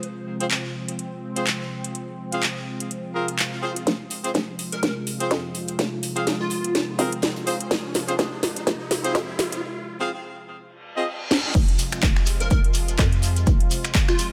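An overdriven electronic kick drum, punchy and up front, slams in at 11.5 seconds to mark the drop in this swaggering, aggressive bass house passage in F minor at 125 BPM, its 16ths swung at 56%. Before that, an overdriven house kit with a cracking snare, metallic hats, finger snaps, handclaps and crash cymbal drives from the start, re-recorded in a large room, while a clear, up-front horn section fires vibrato-laden pop stabs through tape echo. A sweeping resonant pad holds airy, evolving sawtooth chords with chorus and sidechain pumping, and from 3.9 seconds a hollow, knocking FM bass bounces underneath as a very quiet, crisp fusion kit with a high-tuned snare joins in. A plucky, detuned unison lead with sampler grit and tape echo states a catchy hook, while a swell, riser and reverse cymbal sit in the background from 3.1 seconds through the long build-up. At the drop a grainy, mellow shekere adds texture, all within a light studio reverb, in a section cut from a longer piece.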